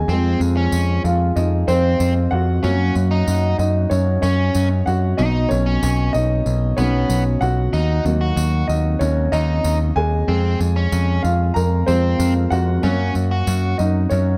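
A dry, close recording in a small room with a 1970s studio character opens this short cut from a longer piano-driven pop piece, moving at 94 BPM in a straight 4/4 with a driving, earnest mood over chords from Fm through Gb, B and Ebm. A woody upright piano with long sustain sits up front and carries a solo across the whole span, backed by a punchy, direct picked electric bass and a biting overdriven guitar riff touched with spring reverb. A jingly tambourine that carries a live-room sound keeps time from 0.1 seconds to nearly the end.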